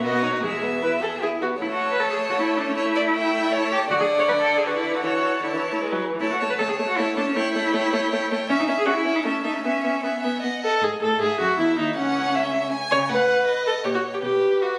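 A quick, spirited classical-period movement for string quartet in triple time, cut from a longer piece and cheerful throughout. The first violin carries the melody with a rich, smooth vibrato, yet it sits distant and in the background, so the second violin, up front and close, often draws the ear with its soft attack, portamento and expressive tone. The viola fills the accompaniment with an even, bowed line, while the cello supplies a focused bass from a more distant position and drops out at 14.5 s, just before the others finish at 14.8 s. The harmony moves from a home-key opening into a contrasting middle stretch that shifts its center around 8.5 s, then returns to the opening material at 10.8 s and closes on an unresolved suspended chord. The sound is wet with recital-hall reverb, layered with club reverb and compression, and carries the character of a phone recording made in the hall.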